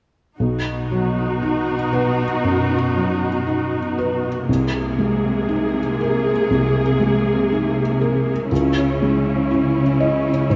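Uplifting and hopeful, this emotional cinematic film score excerpt moves at a slow 60 BPM in 4/4 with a free, rubato feel, tuned to A4 = 438 Hz. A felt-muted upright piano sits up front with a soft, mellow, intimate tone, its thick felt giving the notes a hushed, rounded quality across a span from B1 to Eb5. Beside it, a dark symphonic viola section plays bowed accompaniment with expressive vibrato and a smooth, lush top, while a rich cello section anchors the bass with a focused, close sound. All three parts play together from 0.4 to 10.6 seconds, moving through a B chord, then Abadd9/C at 4.5 seconds and Dbmadd9 at 8.5 seconds. A moderate scoring stage reverb with a 2.2-second tail surrounds the ensemble, and the passage is cut from a longer piece.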